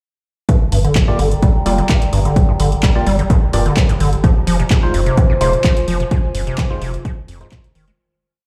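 This raw, gritty acid house piece opens at 0.5 seconds with a squelchy, resonant square-wave acid line carrying accents and slides, its 12-step loop drifting against the bar under a filter sweep that runs through the whole track, with overdrive, subtle chorus and delay. A punchy, tape-warm four-on-the-floor kick sits up front from the start alongside programmed closed and open hats and a clap backbeat from an analog drum machine, all at 128 BPM in a straight 4/4 groove in G phrygian. A deep, round sine sub bass plays off-beat notes from 0.7 seconds, given tube saturation and sidechain pumping. Sparse, nasal organ-like chord stabs with echoing delay and chorus move one shape in parallel, while a warbling, lo-fi pad with slow attack, ring modulation and its own reverb slowly shifts dark, nostalgic chords over Gm7 moving to Fm7, pumping against the kick. The sound is that of a big system in a bare room with a large studio reverb, and the whole short piece fades out from 5.5 to 8.0 seconds.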